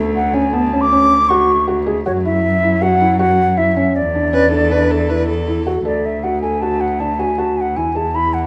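A wooden flute with a pure, crisp-attacked tone and vibrato carries the melody in this playful, shimmering chamber excerpt in 5/4 at 158 BPM in D lydian, over a rich bowed cello bass and soft arpeggios from a felt-muted upright piano, while a dark viola slides in expressively with a brief second line from 4.3 to 5.8 seconds, all set in a recital hall's lush reverb.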